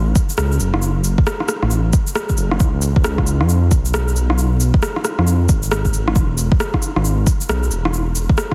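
A dark, detuned sawtooth bass opens this melancholic, nocturnal future garage excerpt, rumbling low with a beating, sustained tone and a fast attack, pumping through sidechain compression. At 0.2 seconds a deep, overdriven electronic kick drum joins up front, layered and re-recorded in a large room. Alongside it comes a layered electronic percussion part of cabasa, shaker and rim click, also driven with overdrive and sitting slightly lower in the mix. The groove sits in 4/4 with a swung sixteenth-note feel, and light reverb surrounds the parts. Vinyl crackle and a dense, heavily limited modern master give the brief clip a dusty yet punchy late-night character.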